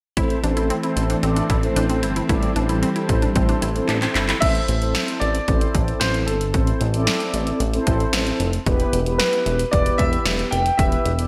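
A clear baby grand piano carries the melody from 4.4 seconds, over a cool, nocturnal synth-pop groove at 113 BPM in A minor, with a punchy, tape-warm analog drum machine in gated reverb, a glossy, nasal chorused synth bass and round, mellow synth brass throughout, while a shimmering string machine and a squelchy, resonant blip pluck with delay sound only until a drum fill leads into the piano's entrance, all set in a lush hall with a bright 1980s-style digital sheen in this short excerpt.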